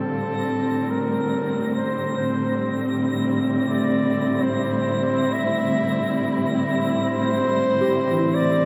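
Serene and peaceful, this slow ambient fragment at 68 BPM in C mixolydian rests on a single C7 chord. A distant, roomy flugelhorn carries a classical-style melody through delay while veiled, con sordino strings hold dark bowed chords up front with vibrato, and a twinkling granular texture adds a bright octave-up shimmer from 0.2 seconds. Soft felt-like synth keys with chorus and phaser sound arpeggios only at the very start and again from 7.8 seconds, and the whole dreamy mix is soaked in a lush hall reverb.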